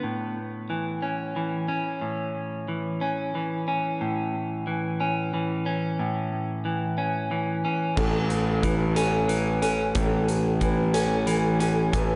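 Soaked in a lush hall reverb with a soft, dreamy top end, this cinematic, hopeful post-rock fragment in 6/8 opens with a clean, up-front electric guitar picking arpeggios through spring reverb and analog delay. At 8.0 seconds the rest of the band joins: a felt-muted upright piano adds mellow, intimate arpeggios with audible action noise, colored by chorus and delay; a growly, overdriven fuzz bass plays a low A; and a huge arena drum kit brings a punchy kick, hi-hat and crash cymbal in a big acoustic room. All four play together until the piece is cut off around 12.2 seconds.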